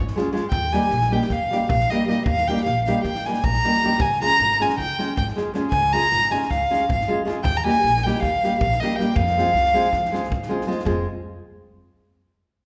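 A dark, intimate violin, bowed sul tasto with light vibrato and a soft attack, carries the melody up front from 0.5 s in this restless, virtuosic Balkan wedding-band folk piece in 9/8, cut from a longer performance. Beneath it, a full-bodied nylon-string guitar is fingerpicked up front, a woody, growly pizzicato upright bass thumps along, and a natural drum kit with punchy kick and snare sits in the background. The harmony moves through Db and Eb before settling on F minor, and the whole band sounds in the wet reverb of a recital hall.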